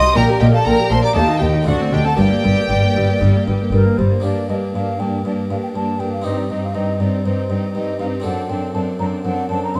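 Festive and brilliant, this baroque-style concerto movement in G minor at 120 BPM sets an airy, hollow concert flute melody over a violin section carrying an expressive, vibrato-laden upper line and a focused second line in the background, while a dry, up-front harpsichord and a smooth-topped viola section fill in the accompaniment, an even cello section holds the bass, and a soft-attack, distant double bass section joins at 0.2 seconds and drops out at 4.1 seconds, all caught by close, detailed microphones in a moderate recital hall reverb.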